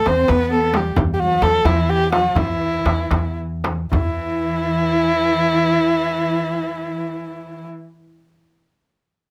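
Longing and melancholic, this brief cut from a longer Persian modal ensemble piece moves in a straight 6/8 and slows down between 1.0 and 3.9 seconds. Up front, a single bowed kamancheh carries the melody with vibrato and portamento, its tone woody and close. Beneath it, a distant studio cello section plays a second line with dark, expressive bowing, soft attacks and vibrato. A pizzicato upright bass on gut strings anchors the low end with a thumpy sound. Tombak and frame drum sit in the background: the tombak is deep and vintage-tinged with soft hands, the frame drum large and dry, and both stop at 4.2 seconds as the strings continue into the closing passage. The sound is intimate and detailed, with little reverb.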